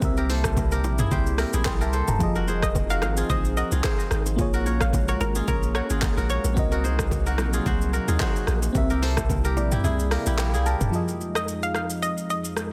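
Mellow and smooth, this afrobeats piece moves at 110 BPM with a lightly swung 16th-note feel. A tremolo-laden FM electric piano with phaser and an airy, flute-like pad with chorus sit behind a crisp, ringing kora riff touched by tape echo, over a C7, Fm7, Bbm7, Cm7b5 progression. An up-front, overdriven deep house kit with handclaps, rim clicks, shaker and toms plays alongside a punchy sine sub bass and very quiet, dry congas and bongos, while a bouncy, hollow square-wave pluck with chorus and tape echo carries the melody from 2.6 to 6.4 seconds and returns briefly at 11.4 seconds; near the close the electric piano plays a fill as the kick drops out at 9.8 seconds, and the bass and hand percussion stop at 10.9 seconds as the music shifts into a new section.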